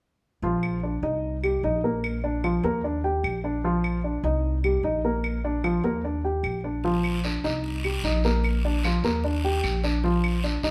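Lively and sunny, this Afro-Cuban jazz passage cut from a longer piece moves at 150 BPM in a straight 4/4 in Bb major, with an intimate, up-front upright piano, slightly detuned and with its action noise audible, cycling through Bbadd9, Cm7, Bb and Ebmaj7 as a dark, pizzicato upright bass on steel strings holds the low end, woody claves sit low in the mix, and a raspy guiro joins at 6.8 s, under a moderate large-studio reverb.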